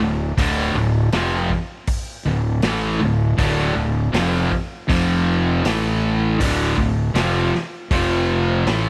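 A straight 4/4 pulse at 80 BPM drives this short, raunchy blues rock power trio excerpt with a southern rock edge. The fuzz guitar carries the riff from the first second, distorted, bright and double-tracked, sitting up front and compressed as it moves through power chords on D, F and A. Beneath it, the fingered electric bass growls with overdriven fuzz, punchy and direct, holding the low end in its deep register. The vintage drum kit joins at 0.4 seconds with kick, snare and hi-hat, its punchy kick and medium-tuned snare sounding mid-forward with a rolled-off top. A small room ambience gives the trio a close, roomy feel across the whole passage, which runs to 8.9 seconds.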